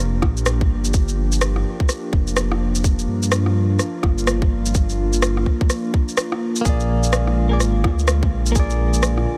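Future garage at 126 BPM in G phrygian with a 16th-note swing and a rainy, nocturnal mood: a warbling, lo-fi pad with chorus, reverb, 12-bit grit and sidechain pumping holds Gm7 over a deep, rumbling detuned saw bass with tube saturation, while a tight, overdriven kick sits up front alongside an overdriven rim click and shaker, and at 6.6 seconds a twangy clean electric guitar enters with dub echo as the chord moves to Bb7, all in a dry mix cut from a longer piece.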